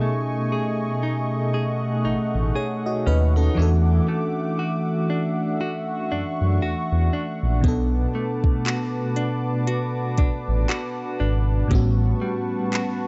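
A dark, dry production frames this late-night, sensual contemporary R&B fragment at 59 BPM in B dorian, where a glassy, bell-like FM electric piano with chorus, a detuned analog pad that pumps under sidechain, and a bright, scooped clean guitar playing tremolo-shaded arpeggios move through B13, E9sus4, Bm7 and A13, joined at 2.0 seconds by an up-front gliding synth bass with portamento and vibrato and at 7.6 seconds by a soft electronic kit of kick, smooth hi-hat and handclaps with a swung sixteenth-note feel.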